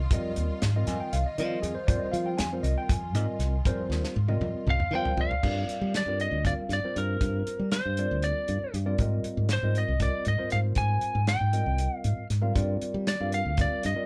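Counted in a straight 7/8 at 236 BPM in eighths, this slick, funky electric jazz fusion passage in F dorian is cut from a longer piece and moves between Fm9 and Gm7. A damped 70s drum kit sits up front with a tight kick, medium-tuned snare and dark cymbals, playing a fill from 3.9 s into the change, while a growly fingered electric bass holds the low end close to the listener. A tine electric piano, worn and slightly out of tune, comps throughout with light overdrive through its built-in speakers and adds a brief fill just before the second section. A bright studio string section holds sustained bowed chords with vibrato in the background for the opening only, stopping at 5.4 s. From 4.7 s a lightly driven, twangy lead guitar takes the melody, picked and compressed with an edge that breaks up a little, as the band plays live together in a small room with moderate reverb.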